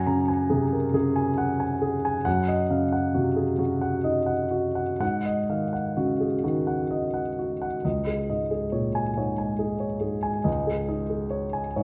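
A solo grand piano opens this short excerpt of neoclassical minimalist music, its warm, natural tone carrying audible action noise across a range from Db2 to Bb6. In a slow, rubato 6/8 at about 41-47 dotted-quarter beats per minute, the intimate, tender harmony moves from Gbadd9 through Ebm7/Gb and Ab5, then shifts to Dbsus2 at 7.8 seconds as a new section begins. The up-front piano sits in a moderate recital hall reverb with a 1.3-second decay.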